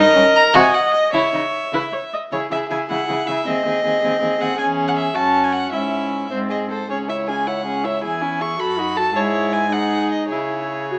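In a straight 6/8 at 105 BPM, this quick classical-period movement for string quartet in C# minor feels restless and dramatic, its harmony circling back to C# minor over an 11-second stretch cut from a longer piece. The first violin carries the melody up front with a rich, lightly vibrato-touched gut-string tone, while the second violin adds a reedy second line and the viola, also forward in the mix, fills the accompaniment with light vibrato. Beneath them a distant, nasal cello holds the bass, all heard through a moderate large-studio reverb with a small-speaker sound.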